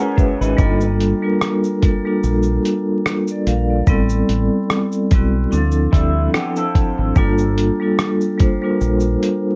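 A ringing, metallic vibraphone struck with hard mallets carries this nostalgic, reflective lo-fi hip hop excerpt at 73 BPM in G dorian, its tape-saturated tone shimmering with a medium motor vibrato over a swung 16th feel and chords moving from Gm9 through Am9 and Dm9. A gritty, compressed sampler-style kit with a thumpy kick, hi-hat, rim click and shaker sits up front beside a round, dark dub bass from 0.4 seconds. A slightly broken-up electric guitar through a small old amp adds brief, lo-fi fingered phrases with subtle chorus and analog delay at the opening and again around 5.9 seconds, all under moderate studio reverb and a layer of vinyl crackle.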